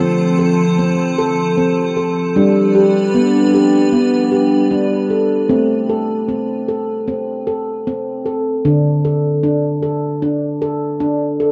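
A ringing stainless-steel handpan plays arpeggios with sharp finger strokes throughout this meditative, hypnotic world piece, sitting up front in a boxy small room. An icy, crystalline glass pad with chorus and reverb holds sustained chords alongside it over F and G until 5.5 s, after which the handpan carries on alone through A minor and a closing D5. The home cassette recording gives the sound a tape-tinged, wet booth character, and the passage is cut from a longer piece.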